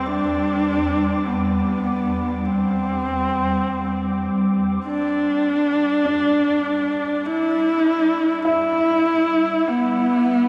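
This fragment of a longer piece is a desolate, cavernous dark ambient drone in free time and E minor, where a horsehead fiddle, a baby grand piano and a swarming drone all sound together from the first moment. Up front, a single bowed fiddle carries the melody in a husky, woody voice with vibrato and portamento, moving between B3 and E4. Delay trails it, and its dark tone has a distant cast. Behind it, the piano plays warm, natural arpeggios in the background, also echoed by delay. Beneath both, the drone holds detuned unison sine tones that warble and evolve, with a slow attack, long release, a moving notch and granular grain, giving a tense, vintage edge. The harmony rests on Csus2 before turning to E minor at 4.8 s, and a huge, wet reverb with an 8.8 s decay surrounds the ensemble in a vast, dim space.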